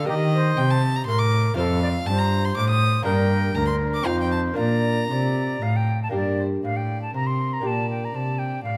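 A dark, up-front cello with period gut-string tone anchors this grave, introspective baroque-style sonata excerpt in Bb major, moving in 3/4 at 120 BPM. Above it a nasal, reedy violin carries the melody while a silver concert flute with soft-attack vibrato sings a second line, and a delicate fingerpicked lute with double gut strings fills in the accompaniment. Close, detailed microphones catch each player inside a moderate concert hall reverb, as the harmony moves from Eb and F through G minor and Bb before returning to G minor.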